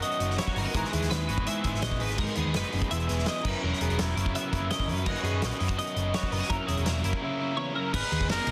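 Driving straight 4/4 at 167 BPM sets a playful, bright math rock and midwest emo feel in E lydian, heard in a short cut from a longer piece. A loose indie drum kit sits up front with a fat snare, tight kick and dark cymbals, and the hi-hat, ride and crash all appear. A round, hollow-body short-scale bass enters at 0.2 s, while a clean, scooped twangy guitar plays fingered accompaniment until 7.9 s. Above them, a compressed twelve-string electric guitar spins bright picked arpeggios through analog chorus and slapback echo, and a double-tracked overdriven guitar carries the riff. The harmony moves through rich extended chords such as Emaj9, G#m9 and F#7sus4, and at 7.9 s a clear pop-style trumpet takes a brief solo melody with vibrato and its own slapback echo. The sound is dry, dense and heavily limited, with a modern master.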